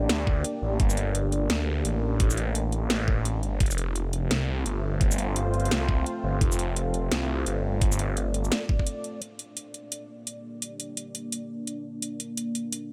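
A moody, detuned sawtooth analog pad with chorus and sidechain pumping opens this dark, spacious half-time drum and bass excerpt in G minor at 171 BPM, alongside a thick, swirling detuned saw bass with phaser and tube saturation that drops out at 8.5 s, while an up-front, tape-warm kit of cracking snare, metallic hats and shaker enters at 0.1 s and is joined by a knocking electronic kick from 0.3 s, moving through a Gm-to-F drop and a brief break before returning to Gm at 9.2 s in a digital ambience.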